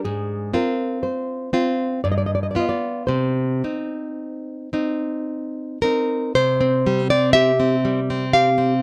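In a rubato three-beat lilt, this yearning, solemn romantic duo sets a dark, thumb-plucked nylon-string guitar melody against an up-front, fingerpicked nylon-string guitar accompaniment with a fresh-stringed, full-bodied tone; the melody falls silent at 5.8 seconds while the accompaniment carries on alone to 8.8 seconds, heard close and dry in this brief fragment of a longer piece.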